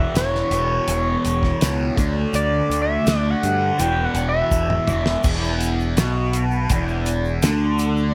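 A tearing, oscillator-synced synth lead with chorus, vibrato and tape echo carries a solo melody through the first 5.2 seconds of this trippy, mysterious psychedelic rock excerpt at 83 BPM in 4/4, moving over chords of E5, D5 and back to E5. Beneath it, a double-tracked fuzz guitar with phaser plays a riff alongside a growling, overdriven picked bass, both up front, while a dry 70s drum kit with a fat snare and tight kick plays a fill from 4.5 seconds before the section changes. A grainy egg shaker sits in the background of the echo-heavy mix, which has light reverb and studio ambience.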